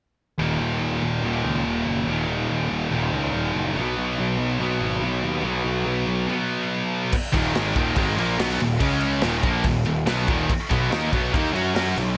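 Lightly reverberant and dark at the top, this heavy metal fragment, cut from a longer piece, moves at 143 BPM in a straight 4/4 in Eb minor with a brooding, weighty mood. From 0.4 seconds a scooped, bright, high-gain guitar plays the riff up front, backed by a sludgy, overdriven guitar tucked in the background and a growly, fuzz-laden picked electric bass sitting forward in the mix. The opening stretch rides on power chords, Eb5 and then B5. At 7.1 seconds a punchy modern studio drum kit arrives with crashing cymbals, a medium-tuned snare and kick, and the harmony moves through Ebm, Db5 and B5. At 7.3 seconds a double-tracked, heavy high-gain guitar joins the riff in the background, thickening the guitar wall through to the cut.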